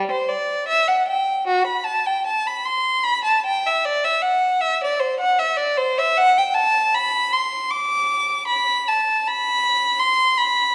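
Set in a moderate recital-hall reverb, this short cut from a longer baroque-style suite movement for unaccompanied violin unfolds in G major at 77 BPM in a rubato 4/4, the solo violin sitting up front across its full 10.7 seconds with a warm, focused, vibrato-rich tone and a smooth top between F#4 and D6, tuned to A4 = 435 Hz, for an introspective, solemn mood.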